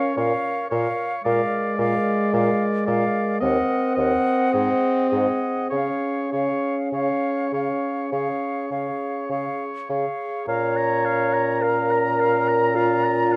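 An airy, mellow silver flute with vibrato carries the melody in this serene, slow romantic wind-quintet excerpt in Db major at 49-56 BPM with rubato, joined by a clear oboe second line and supported by an up-front, soft-attacked French horn, a smooth clarinet and a lightly vibrato bassoon entering at 0.2 s, all set in a moderate recital-hall reverb with a dark, warm production.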